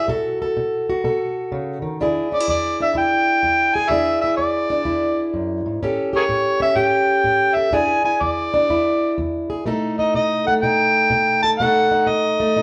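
Rollicking and swaggering, this swung acoustic country blues excerpt at 125 BPM in E mixolydian puts an overdriven, gritty, amplified harmonica up front, opening with a solo and full of tongue slaps, scooped notes and punchy jazz-style phrasing, over a dark, boxy fingerpicked parlour steel-string guitar that moves from B7 to E7 at 2.0 seconds and on through A7, all in a wet, large studio room with a live-band feel.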